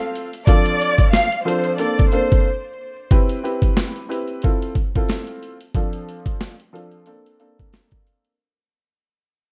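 A confident, nostalgic boom-bap hip-hop groove at 91 BPM with a swung 16th-note feel opens on a worn, woody upright piano, slightly detuned and coloured by cassette tape, alongside a gritty, compressed sampler-style kit with a thumpy kick and high-tuned snare, pitched down and re-recorded in a large room. From 0.5 to 2.4 seconds a rich, bowed violin section carries the melody up front, its vibrato and soft attack trailed by tape echo, before a brief break and a fade-out beginning at 3.1 seconds over chords such as Dm7/F, Bbmaj9 and Cmaj7. Small room ambience, vinyl crackle and a rough home-demo mix frame this cut from a longer piece.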